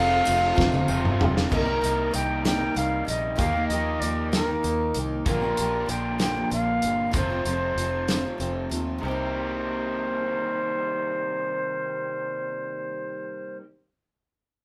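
A straight 6/8 lilt at 64 BPM carries this wistful, dusty folk rock and heartland rock passage in C dorian: an airy wooden flute with a soft attack sings the melody up front over a bright dreadnought acoustic guitar with finger squeak, a double-tracked, overdriven garage guitar riff, a round, foam-muted fingered bass and a loose indie kit with a tight kick and medium-tuned snare, which plays from 0.3 to 8.9 s and includes an early fill, while a jingly tambourine, a very quiet deep-toned grand piano and a soft tonewheel organ with key click and slow rotary speaker color only the opening 1.5 s, as the chords move from F to Cm7 and the band, playing together in one room, sits in moderate reverb.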